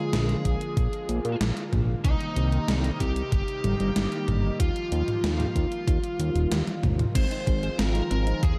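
A bluesy, distorted electric lead guitar with tape echo carries the melody over a fat, saturated analog bass, a silky string pad pumping with sidechain and ensemble chorus, a thumpy overdriven electronic kick and a gated 80s drum machine whose snare rings with gated reverb, passing through a drum fill at 6.5 seconds before a round, tine-like synth pluck adds background arpeggios from 7.2 seconds in this dark, cinematic, nocturnal synthwave excerpt.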